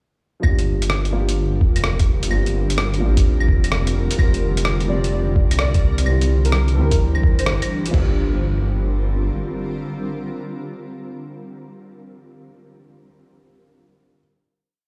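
At 0.4 seconds this ghostly, night-time future garage piece in G dorian opens all at once: a woody, boxy upright piano plays held drop-2 chords with syncopated pushes, a deep, rumbling detuned saw bass glides through long saturated notes up front, and a faint reversed texture holds a single high note in the background. The lo-fi sampler-style kit, pitched down, muffled and overdriven, sets a thumpy two-step kick with toms and crash against a skittering shuffled pattern of closed hi-hat, claves and rim clicks, swung at 128 BPM in 4/4. A cloudy, evolving granular pad drifts in soon after, its blurred chords moving through Gm7, Fsus2 and C, with sampler grit and its own reverb, while the piano, pad and bass all pump with sidechain compression. At 4.9 seconds an airy, detuned lead with chorus, vibrato and tape echo adds short, soft phrases high above. After a band accent, the groove gives way at 7.9 seconds to a final Gm7 chord carried by the piano and pad, all set in a large, reverberant studio space.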